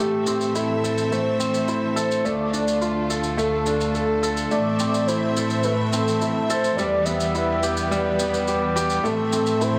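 Piano and strings electronica with an intimate, hypnotic mood, this short passage from a longer piece moves at a straight pulse of 106 BPM and builds steadily throughout. A felt-muted upright piano sits up front with a soft, mellow riff, its thin felt and audible action noise lending closeness, and a digital delay trailing its notes. A velvety synth lead carries the melody with a sawtooth-and-triangle blend, fast attack and sustained tones, shimmering with chorus, vibrato and its own digital delay. Beneath them a lush studio string section holds smooth, bowed chords with even vibrato over a cycle of Am, Dm, Am and Em. A distant, roomy shaker played with brushes enters at 0.3 seconds with a rolled-off top, and a barely audible electronic riser appears at 9.7 seconds. The whole is bathed in a recital-hall reverb within a dark, warm production.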